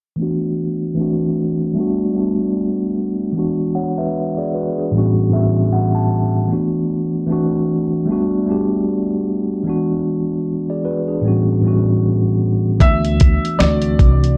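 Mellow and nostalgic, this lo-fi hip hop excerpt in D major sits at 76 BPM with a swung 16th feel, opening on a clean, up-front tine electric piano that plays alone through cassette tape, a low-pass filter sweep and plate reverb, adding a fill at 4.9 seconds as it cycles through D6/9, D7, Gmaj9, E7 and A13. At 12.8 seconds a gritty, compressed sampler-style drum kit arrives up front with a thumpy kick, fat snare and hi-hat, joined by a woody pizzicato upright bass and a brilliant, worn, slightly detuned upright piano carrying a brief melody through low-pass filtering, plate reverb and analog delay. The production is dark, with a moderate room reverb.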